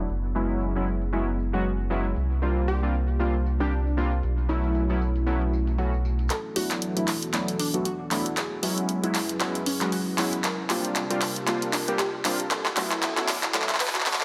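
A swung sixteenth-note groove from a punchy, dry analog drum machine sets this smooth deep house fragment in motion, with handclaps, hi-hat and tambourine sitting up front under a low-pass filter. A deep, full sine sub bass with an octave anchors the opening, then drops out at 6.3 seconds, just as a build-up and drum fill take over. Round, airy analog keys, sawtooth-based and warbling with vintage 12-bit grit, chorus and tape echo, play stabs over sus-chord harmony, and a filter sweep moves across them through the build. Behind them, a moody, wave-folded pad holds long, dark chords, while a catchy unison lead enters at 2.7 seconds with a brief mellow melody. In the second half, a dusty, lo-fi pluck spins warbling arpeggios through phaser, lush chorus and tape echo, all set in a moderate echo-chamber reverb within a dense, heavily limited modern master.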